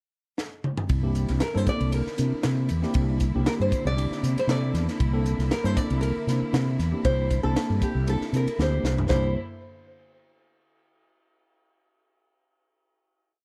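A 117 BPM 4/4 groove with a light 16th-note swing drives this bright, soaring electric jazz fusion piece in C mixolydian: a crisp drum kit with punchy kick and high-tuned snare fills from 0.4 s into a C9 vamp at 0.9 s, where a round, dark fretless bass plays a syncopated riff up front and veiled, muted strings hold a distant bowed pad. A worn, lightly overdriven tine electric piano joins at 1.0 s with rootless chord stabs through analog chorus, while a fingerpicked nylon-string guitar enters at 1.4 s with hook-like phrases through tape echo, the dry mix carrying lossy artefacts before a final chord at 9.1 s.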